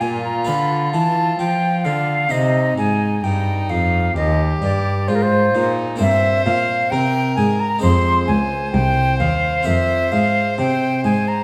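This classical, baroque-style sonata movement with continuo is cut from a longer piece. It moves at an unhurried 65 BPM in a straight 4/4, with an introspective, flowing mood. The violin carries the melody in a single bowed, gut-string voice, period-style and reedy, while the silver concert flute sits up front on a second line, metallic and airy, with vibrato and tongued notes. Beneath them, a close-miked, dry harpsichord gives a full, brilliant plucked accompaniment in the Italian style with octave strings, and a bowed cello supplies a nasal, warm bass that also sits up front. All four parts play for the whole 11.4 seconds, with the harmony rooted in C minor before it turns to F minor at 6.0 s, and a moderate recital hall reverb gives the ensemble a gentle sense of space.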